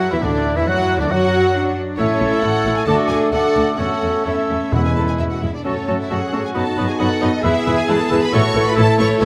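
A graceful, lively fragment of a quick classical-period movement opens with the full symphony orchestra already sounding: a violin section carries the melody with light vibrato, a soft attack and an intimate, close sul tasto tone. Beneath it, a second violin line floats in the background, joined by a bright, present clarinet, a silvery flute with a crisp, straight tone set at a distance, and a close-miked cor anglais, all weaving second lines. A rich but very quiet viola section and a mellow, roomy bassoon fill out the accompaniment, while a French horn section holds sustained chords and a trumpet section adds tight stabs, both kept in the background. Dark double basses and a cello section anchor the bass, and timpani struck with medium mallets on calf heads land dry and close at 0.2 and 4.7 seconds. The rubato phrasing moves through a harmonic journey from D and A toward E, passing F#m and B7/F# before settling on A at 8.3 seconds, all wrapped in a moderate concert-hall reverb.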